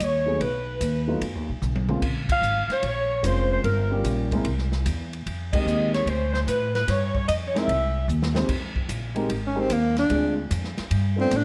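A swung 4/4 groove from a polished, airy big-band drum kit with a punchy kick and a woody pizzicato upright bass drives this sultry, dramatic big band swing excerpt, with short drum fills and band accents along the way. A mellow saxophone section carries the melody with vibrato and a soft attack until 8.1 s, over dark baby grand piano accompaniment. A warm tenor saxophone solo with subtone and vibrato enters at 9.5 s, and the whole passage sits in a moderate large studio reverb.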